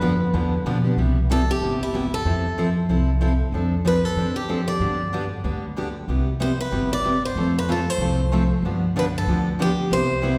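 Acoustic string swing in the jazz manouche style, charming and swinging, where a boxy, fresh-stringed swing guitar carries the picked melody over a bright steel-string dreadnought accompaniment with audible finger squeak and a woody, thumpy gut-string upright bass, all set back in a wet scoring-stage reverb in this short cut from a longer piece.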